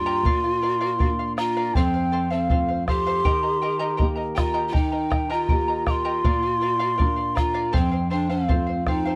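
A mellow large quena carries the melody in this short, wistful Andean folk passage. Its wooden, end-blown tone is airy and soft at the attack, with rolled-off highs and a straight, steady tone. Beneath it, a bamboo pan flute plays a lower second line, expressive with vibrato, a crisp chiff and lifted highs. A bright, shimmering charango fingerpicks its double strings, some doubled at the octave, while a nylon-string guitar adds thumb-plucked classical accompaniment with fresh strings and a warm body. The round bombo sits close and up front from 0.3 s to 9.0 s, giving the straight 2/4 feel an earthy pulse, as the harmony moves through Bb, F and Eb in a dry, close 1970s-style studio sound with a modest booth ambience.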